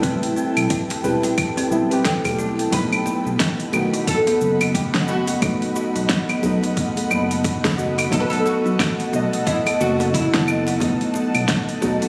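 A bright, woody oud carries the melody in this hypnotic, meditative organic downtempo excerpt, its fretless double strings plucked with a plectrum and trailed by digital delay from 2.1 s. A close, dry kalimba plays ringing, hollow-box arpeggios, while a deep, mellow chord stab with chorus and delay and an ethereal, airy pad with slow attack and long release both pulse to sidechain pumping. Underneath, a smooth, dark synth bass holds a low, sustained line with vibrato. The up-front deep house kit brings a fat overdriven snare, metallic hats, cabasa and claves over a gritty, thumpy electronic kick, with small room ambience on both and a swung sixteenth-note feel. A tight, cracking djembe with metal rattles sits in the background. The harmony shifts from Am7 to B7 at 2.7 s, and the whole carries a light reverb with a casual, phone-in-the-room character.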